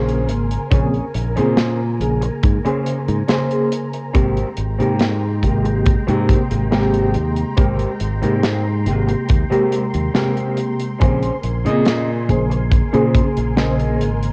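Vaporwave in a melancholic, nostalgic mood, this excerpt sets a round, dark FM electric piano with tremolo and tape echo over silky string machine chords with phaser and sampler grit, a twangy, slightly broken-up guitar riff, a bright fingered bass, and a punchy kick up front with hi-hat and snare from a warm studio kit, all coloured by worn, warbling cassette tape and light room reverb as the chords move from Bbm9 to Abmaj9 and back.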